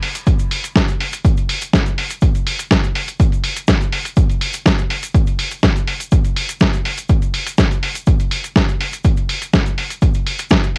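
Dry and lo-fi, this home cassette recording carries a funky, groovy house beat at 123 BPM in a straight 4/4, cut from a longer piece. Up front, a punchy analog electronic kick drum with a roomy, re-recorded character enters at 0.3 seconds. A gritty, compressed sampler-style soul drum kit of hi-hat and medium-tuned snare pumps with sidechain on its hats and cymbals. In the background, a close acoustic egg shaker with a group-handclap flavour also pumps with sidechain.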